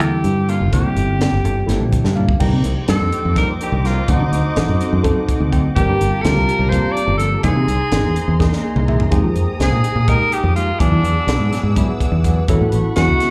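Intense and funky, this electric jazz fusion passage, cut from a longer piece, runs in a straight 7/8 and sounds like a live club gig heard through the venue's PA. An edgy alto saxophone carries the solo melody with light vibrato and a forceful, jazz-style attack, set distant and roomy with slapback echo and analog delay. A reedy electric piano plays clean accompaniment through its built-in speakers, colored by phaser and slapback echo, and adds short fills. Meanwhile a dark, fingered electric guitar sits in the background with stabs, subtle chorus and slapback echo. Up front, a bright, foam-muted fingered bass drives beneath a crisp acoustic kit with a high-tuned snare, punchy kick and pumping room sound; the kit adds fills at 2.0 and 8.4 seconds. At 2.4 seconds a veiled, con sordino string section enters with bowed sustained chords and vibrato, deepening the extended harmony of chords such as Cm9, D7b9 and C7alt.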